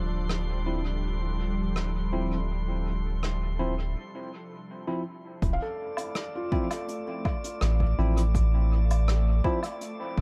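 A round, deep sub bass sits up front through this meditative ambient dub excerpt, under a calm, organ-like pad with ensemble chorus and a drifting, glassy harmonics texture high above, both bathed in built-in reverb. A vintage brush kit with a rolled-off top ticks out hi-hat, rim click and woodblock through dub echo, while a barky tine electric piano adds clean stabs with analog chorus and echo of its own. After a break from 4.0 seconds, a punchy electronic kick enters at 5.4 seconds and a felt-muted upright piano follows with soft, intimate arpeggios, all within a small-room ambience.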